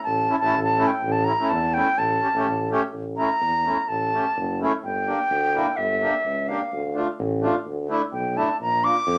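A wet studio ambience with a 0.5-second reverb surrounds this festive, soulful klezmer fragment in A phrygian dominant, set in straight 4/4 at 126 BPM and speeding up throughout. An airy, reedy silver concert flute carries the melody up front with a soft attack and straight tone, taking a solo from 2.9 s, while a clear, boxy single-reed accordion supplies accompaniment and a warm tuba with light vibrato and a smooth top holds the bass. The harmony moves from A through Gm and Dm to Bb.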